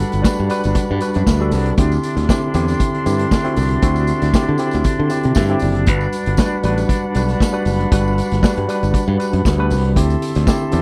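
A bright, growly fingered electric bass sits up front and punches through this joyful, danceable disco excerpt, which moves at 117 BPM in a straight 4/4 in G major. Joining at 0.1 seconds, a vintage acoustic drum kit of kick, snare and hi-hat sounds like it was tracked in a small, pumping room, with a punchy kick, a medium-tuned snare and a rolled-off top. A worn, lightly overdriven tine electric piano, slightly out of tune and heard through its built-in speakers, carries the accompaniment and plays a brief fill between 5.1 and 5.9 seconds. Behind it, a breathy flute section holds sustained chords with vibrato, tongued and a little unsteady, while a jingly tambourine sits in the background. The harmony moves between Gmaj7 and D9sus4, and the whole mix carries little reverb.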